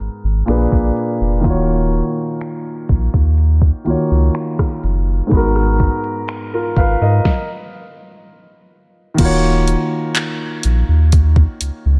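Longing and late-night in mood, this contemporary R&B fragment, cut from a longer piece, moves at an unhurried, straight pace. A concert grand piano carries the accompaniment with a mellow tone and deep bass, while a round, sine-like sub bass sits up front with a fast attack and long sustain. An electronic, produced drum kit joins at 0.5 seconds, with a soft kick, fat snare, dark hi-hats, rim clicks, finger snaps, handclaps and crash cymbal placed close in the mix. The harmony moves from Bb7b9 to Ebm9 and on to Abm9, and a filter sweep runs across the whole opening section up to 9.2 seconds, while a stop from 7.3 to 9.2 seconds briefly suspends the chords. A new section then settles back onto Ebm9, framed by light reverb and a low-pass filter that keep the sound hazy and intimate.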